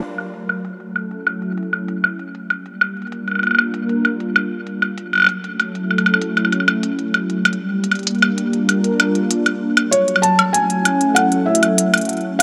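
Eerie and cerebral, this 97 BPM IDM passage sets a smooth, detuned sawtooth analog pad with chorus and vintage 12-bit sampler grit, holding sustained F#m7 and Gm7 chords, against crisp, overdriven electronic hi-hat and woodblock drums under filter sweeps, until a soft, dark, thick-felt muted upright piano enters at 9.9 s with an intimate melody through digital delay, all set in a lush hall reverb.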